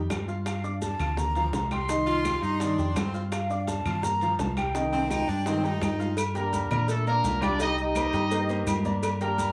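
A driving, passionate salsa groove in G minor runs at 168 BPM, built on a round, dark electric bass up front, a clear, worn grand piano with long sustain, and a background bed of ringing congas, tight high-tuned bongos and cowbell, woody claves, grainy maracas, and distant metal-shelled timbales and agogo bells. An airy, hollow flute with vibrato carries the melody from 0.5 s, joined at 2.1 s by an edgy, punchy saxophone section playing a second line, and a drum fill leads into the next section. At 6.4 s a mellow, roomy horn section in octave doubling takes over the tune with plate reverb over a Gm chord, in a short cut from a longer piece.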